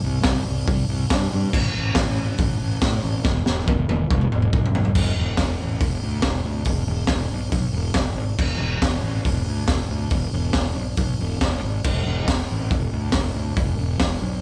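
Swaggering and raw, this garage rock piece drives a straight 140 BPM in E mixolydian, with a round, fuzz-soaked fingered electric bass up front from the first second and a gritty, saturated drum kit entering at 0.2 s in a small, pumping room, its boomy kick, high-tuned snare, dark cymbals, hi-hat and toms heard with a rolled-off top and little reverb, while a drum fill from 3.2 s launches a new section at 5.0 s.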